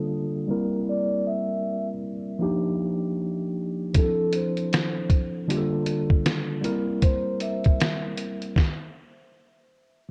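Lo-fi hip hop with a hazy, melancholic mood at 78 BPM, swung on the sixteenths. A clean, up-front tine electric piano carries the C7, Ebmaj9, Dm9 and Gm9/D changes through cassette-tape grit, while a dry, close-miked vibraphone, played with soft mallets and the motor off, sings a ringing, metallic melody through analog delay. A pitched-down, muffled sampler-style kit with a thumpy kick and fat snare enters at 3.9 s, a filter sweep runs throughout, warbling old-tape drift and light digital ambience colour the mix, and the music stops at 8.6 s in this cut from a longer piece.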